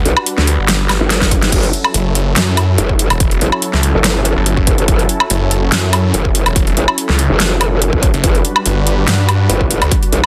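A snarling distorted saw bass growls up front in this menacing, chaotic heavy wobble dubstep excerpt, its detuned sawtooth unison tone carrying a moving notch and heavy distortion in the low register. Beside it, an up-front growl bass wobbles through a formant filter, with chorus and overdrive thickening its saturated snarl. The half-time groove at 143 BPM in F# phrygian comes from an overdriven big-room dance drum kit with a huge snare, metallic hats, crash cymbal and woodblock, plus a punchy layered electronic kick that enters at 1.2 seconds, midway through a short drum fill. In the background, a lush, bright supersaw pad sustains chords moving from Gmaj7 to F#m7 and back, pumping under sidechain compression and a low-pass filter. The mix is dry, dense and heavily limited, with the basses and drum kit pushed hard to the front.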